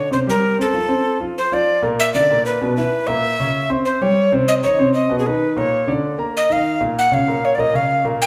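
Driving and sophisticated, this short jazz excerpt moves at a brisk 193 BPM in a straight 4/4 feel. A breathy alto recorder carries the melody up front, its woody tone marked by a crisp, chiffy attack, vibrato and a slightly unsteady quality. Beside it, a warm concert grand piano supplies the accompaniment across a broad span from deep bass to high upper notes, sounding intimate and smooth with long sustain, a vintage character and audible action noise. Both instruments play throughout the 8.3 seconds, with a brief opening passage giving way at 1.4 seconds to a longer section whose harmony moves through colourful chords such as C7b9/Bb, Bmaj9 and Ebsus2 before settling on Bbm. The pair sound like a band playing live together in a stone room, wrapped in a wet reverb that lingers for about 1.3 seconds.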